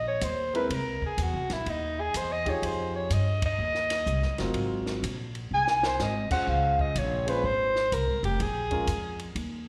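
Swinging and playful, this short cut from a longer small-group swing and bop performance moves at 125 BPM in 4/4 with a lilting swung eighth-note feel, centered in Ab major. A mellow soprano saxophone carries the melody up front, its light vibrato set in a distant, roomy space with plate reverb and slapback echo. Beneath it, a woody, thumpy pizzicato upright bass anchors the low end, while a compact cocktail drum kit adds a punchy kick, a high-tuned snare and dark cymbals with a dry, natural sound. A present grand piano with long sustain fills in the harmony through chords such as Abadd9, C(#9), Fm9, Ab13, Dbmaj7 and Bbm7, sharing the saxophone's plate reverb and slapback echo. The band hits an accent at 3.3 seconds and the drums play a fill from 5.5 to 6.0 seconds, all heard as a live gig through the venue's PA in a moderate club reverb.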